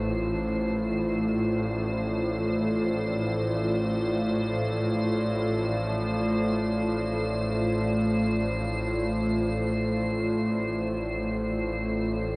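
A nasal, tense bowed-like drone sits up front over a deep, moody analog pad with chorus, an airy, crystalline glass pad floating high above, and very quiet, solemn tubular bell arpeggios, all present for the full 12.4 seconds of this cavernous, desolate dark ambient excerpt set in a vast, echoing cathedral-like space.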